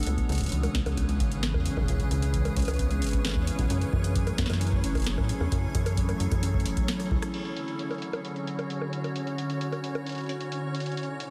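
IDM excerpt with a wistful, playful mood, where an icy glass pad holds crystalline chords over a rubbery square bass, a booming analog drum machine with metallic hats and a deep dry electronic kick, background kalimba arpeggios with tape echo, and a grainy flickering texture, until the bass, kick and kalimba drop out during a drum fill and band accent around 7.2 seconds, leaving pad, drums and texture on a Dmaj7.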